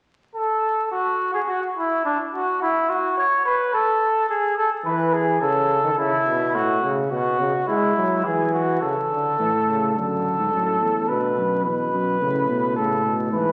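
The sound is that of a very old 78 rpm record, with vinyl crackle over a wet scoring-stage reverb that gives the ensemble a spacious halo. This lively, joyful classical piece is an imitative canzona for brass ensemble in A major, moving at a straight 106 BPM in 4/4. It is cut from a longer piece. A distant, roomy flugelhorn with vibrato opens alone at 0.4 seconds, carrying the second line up front in its middle register. A warm trombone with a soft attack and smooth top joins at 4.8 seconds as accompaniment, and the harmony moves through E/G#, A/C# and F#m/A to E. A mellow tuba with light vibrato enters at 9.4 seconds to anchor the bass, as the second section turns through A/C#, D/F# and Bm/D to settle on A.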